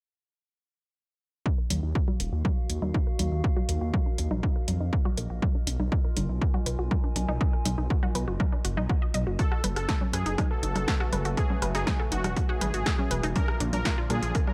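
A straight 4/4 pulse at 121 BPM drives this cinematic, melancholic slice of melodic techno, with a punchy, tape-warm electronic kick up front and an analog drum machine adding congas, hi-hat, rim clicks and a snare. From 1.5 seconds a bright, warbling unison pluck spins arpeggios through a filter sweep, its vintage sawtooth edge softened by cassette tape character, delay and sidechain pumping. Beneath it, a menacing detuned saw bass swells and evolves with a saturated bite, breathing with the same pumping, while a dark, lo-fi tape-like pad with chorus and its own reverb hovers nostalgically in the background. At 9.4 seconds a smooth, soft supersaw melody arrives with dub echo, joined by a very quiet, chorused analog pad holding sustained chords. The harmony moves from Ebmadd9 to B, then Gbmadd9 to Bb, all set in a digital ambience, and the passage is cut from a longer piece.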